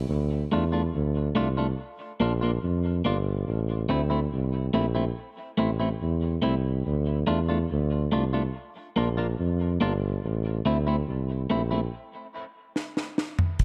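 A straight, unhurried 4/4 pulse at 71 BPM carries this deep, hypnotic dub reggae passage, cut from a longer piece. A smooth-topped tuba with light vibrato holds the bass line up front over a Dm, Bb and Am cycle, joined at 0.5 seconds by a bright, twangy, picked electric guitar, clean and compressed, thinned by a high-pass filter and trailed by dub echo. The guitar drops out at 11.8 seconds and the tuba at 11.9 seconds, and at 12.8 seconds a dry acoustic reggae drum kit with a high-tuned snare and tight kick plays a fill across hi-hat, kick, snare and toms, all set in a dark, small-room production with light reverb.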